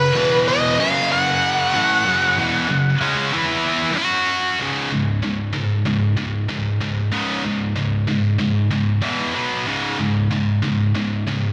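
A swaggering, powerful rock cut at 95 BPM opens with a biting, overdriven lead guitar melody over a heavy, double-tracked high-gain riff guitar that sits up front with distortion and slapback echo; the lead stops at 3.9 seconds, and the riff carries on alone through chords such as E5, Gb5 and Db5 until 11.5 seconds, all bathed in a lush hall reverb that gives a big arena sound.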